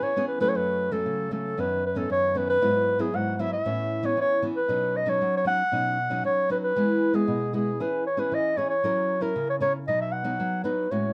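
Playful and lively, this short samba excerpt moves at 116 BPM in a straight 4/4. A warm, classical-style clarinet carries the solo melody up front, while a fingerpicked acoustic nylon-string guitar plays classical accompaniment, also up front, through colorful chords such as Badd9, Aadd9 and F#7. Both parts play throughout the 11.1 seconds, set in a moderate small-room reverb.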